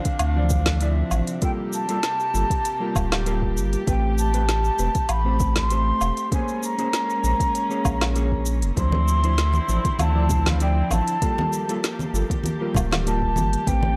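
Relaxed and warm, this sunset chillout excerpt moves at 98 BPM in a straight 4/4, cut from a longer piece and moving through lush ninth chords from Dm9 through Gm9, Am9 and Bbm9. A breathy, mellow wooden flute carries the melody between E5 and C6, sounding distant and slightly unsteady with vibrato and tongued notes, set in analog delay and shimmer reverb. Beneath it, a rich, earthy chamber string section holds sustained bowed chords with light vibrato, while a dark, clean hollow-body jazz guitar adds fingered accompaniment, both also bathed in shimmer reverb. A deep, round sine sub bass sits up front with tube saturation, joined by a soft, tape-warm electronic kick and a smooth R&B kit of woody snare, smooth hi-hat, shaker and woodblock re-recorded in a large room. Low-tuned, thick-skinned congas enter at 8.9 seconds, and the whole piece has a dry, gritty hardware character with light reverb.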